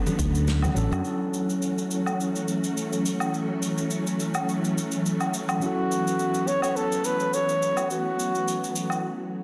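Relaxed and smooth, this sunset chillout excerpt moves at 105 BPM in F# minor with a gentle 16th-note swing, opening on Dmaj7 as a filtered tine electric piano with tremolo and digital delay sits beside a silky, up-front string machine thickened by ensemble chorus. Brushed snare, cabasa and woodblock with a rolled-off top keep time, while soft-handed congas and a tube-saturated fretless bass appear only briefly near the start before the harmony settles on F#m7. At 5.6 seconds a mellow flugelhorn with light vibrato and delay takes the solo melody, all bathed in a lush hall reverb, before a short break at 9.0 seconds.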